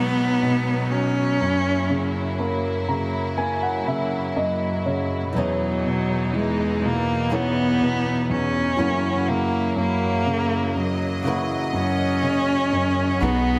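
A rich, bowed solo cello carries an emotional, hopeful melody over a warm concert grand piano, clear, earthy string-section chords and a very quiet electronic downlifter in this slow 61 BPM pop ballad excerpt, with the piano adding a fill from 2.4 s before a fingerpicked flamenco guitar enters at 5.3 s with delayed arpeggios over C#m7/E and F#7, and a thick, saturated sub bass arrives up front at 13.2 s, inside a lush hall reverb.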